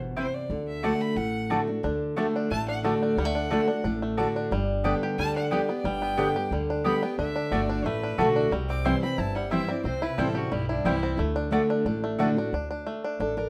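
Driving and virtuosic, this bluegrass excerpt runs at a brisk 180 BPM in a straight 4/4, centred in D mixolydian. A warm, picked steel-string acoustic guitar sits up front with a dreadnought body, carrying the accompaniment, while a thumpy, woody upright bass on gut strings plucks out the low end. A clear, focused fiddle, bowed by a single player with light vibrato and sitting close, carries a solo line from 0.2 seconds until it drops out at 11.2 seconds. Round, double-strung mandolin stabs punctuate the groove, and a twangy, percussive banjo played with fingerpicks adds arpeggios from 1.8 seconds. The harmony moves among C, D and G chords, all set in a moderate studio reverb.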